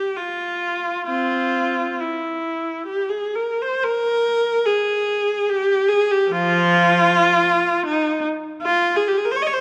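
Yearning and lonely, this brief excerpt of free, expressive classical music for a single bowed viola in F minor drifts in rubato 3/4 at roughly 53-79 BPM, its clear, focused tone with vibrato sitting up front yet sounding faintly distant in light reverb, close and detailed, as the phrase first heard at 0.0 s returns at 3.8 s and runs to 9.6 s across a range from F3 to Eb5, tuned to A4 = 439 Hz.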